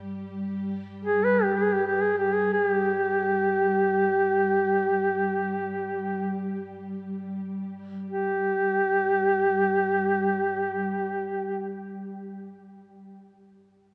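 Mournful and longing, this fragment of a Caucasian folk lament unfolds in free time, with an airy, ethereal pad holding a sustained G3 drone from the start, its detuned, chorused tone softened by a slow attack and long release. At 1.0 seconds a mellow duduk enters up front as the solo voice, singing between G4 and B4 with vibrato, a smooth top and a touch of slapback echo, while the pace slows through the first 8.1 seconds. A dark production and a cathedral reverb with a 4.6-second decay wrap the lament in a vast, shadowy space.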